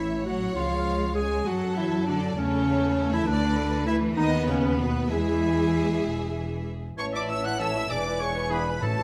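A spirited, lively classical-period movement in A major and 6/8 at 66 BPM (dotted quarters), set in a moderate recital hall reverb, opens with a lush violin section carrying an expressive melody over a smooth second violin line, a mellow solo clarinet, rich cellos and a distant double bass section, with violas joining in the background at 0.6 seconds. At 7.0 seconds the music moves into a new section as a clear, roomy solo oboe, an airy flute section with rolled-off highs and a close-miked bassoon come in, and at 7.6 seconds dark French horns enter with sustained chords while a trumpet section adds stabs in the background. The passage closes with up-front, dry timpani on A2 at 8.8 seconds, played with medium mallets.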